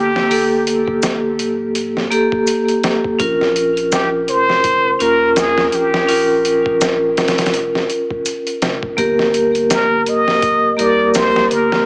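A plunger-muted trumpet leads this brooding, hypnotic trip hop fragment, its jazz-style solo full of wah-wah inflections, vibrato and scooped notes trailed by tape echo, with a metallic, ringing vibraphone under hard mallets shimmering in tremolo just as far forward. A gritty, pitched-down sampler kit with a thumpy kick and studio reverb joins at 0.2 seconds over a swung groove, while a deep, round analog bass sits low in the background and soft-handed maracas enter at 1.0 seconds and stop at 11.3 seconds. The whole piece has the boxy feel of a small speaker, bathed in a moderate spring reverb as the harmony drifts from Gmadd9 through Bbm to Gm.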